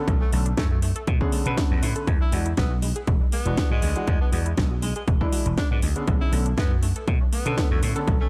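A lightly swung nu-disco groove in 4/4 rests on a punchy, overdriven electronic kick placed up front, joined by a house kit with a cracking snare and metallic hi-hats treated with analog delay, both drum parts re-recorded in a large room, while a growly, amped slap bass anchors the low end. An intimate concert grand piano with audible action noise pumps against the sidechain through Bm9 and E9 and back to Bm9, as a detuned sawtooth pluck adds chorused, round arpeggios with dub echo in the background. A bright tenor saxophone with light vibrato and a smooth top carries the melody through its own dub echo, giving this cosmic, sensual excerpt from a longer piece a dry but echo-heavy mix.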